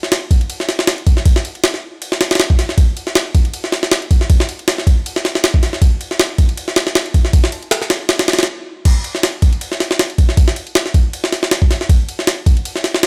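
The recording is dry, with a jungle sampler-style drum kit sitting up front and carrying a touch of studio reverb. This dark, raw drum and bass fragment, cut from a longer piece, runs in 4/4 with a light swing on the sixteenths. The compressed, pitched-up kit has a gritty, tape-warm character, with a thumpy kick and a high-tuned snare alongside ride and crash cymbals. The opening builds until the kit halts briefly at 8.5 seconds. At 8.9 seconds the drums return for the drop, which carries the fragment to its close at 13.1 seconds.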